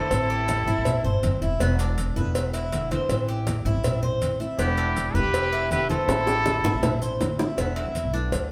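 Sultry and nostalgic, this brief Cuban son and guajira passage in E minor moves at a brisk 161 BPM, as a nasal, breathy muted trumpet with jazz-style vibrato sings two short phrases (returning at 4.6 s) over a dark, gut-string chamber violin section in the background, while a fingerpicked flamenco guitar with finger squeak accompanies and a metallic, double-strung Cuban tres spins arpeggios over Am7 and Em7, a woody, thumpy pizzicato upright bass sits up front, and soft-handed low-tuned congas, tight high-tuned cowbell and bongos, and grainy maracas drive the groove toward a drum fill at 6.1 s, the live band bathed in a wet stone-room reverb.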